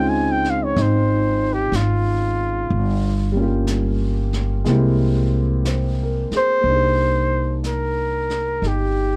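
A gently swung 4/4 pulse carries this melancholic, smoky jazz ballad excerpt, with distant, roomy brushes on snare and hi-hat joining at 0.4 s behind a woody pizzicato upright bass sitting up front. A warm flugelhorn takes the lead with vibrato, soft attacks and scooped notes, soloing over a natural-sounding grand piano through changes from Dbmaj9 to C7b13 before the harmony moves to Cm7 at 6.7 s. The recording carries little reverb.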